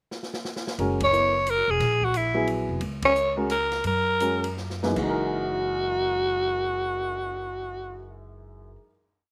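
A growling, raspy alto saxophone sits up front with a scooped, vibrato-laced motif over syncopated quartal comping from a woody upright piano with slapback echo, thumpy gut-string upright bass in a two-feel, and an open jazz kit with dark cymbals and a boomy kick. Together they make a short, hypnotic and spiritual modal jazz waltz in F# mixolydian, swinging at 151-178 BPM with a drum-fill pickup, a slowdown from 2.8 to 5.0 seconds, and a closing F#13 chord arriving at 5.0 seconds in a dry, roomless sound.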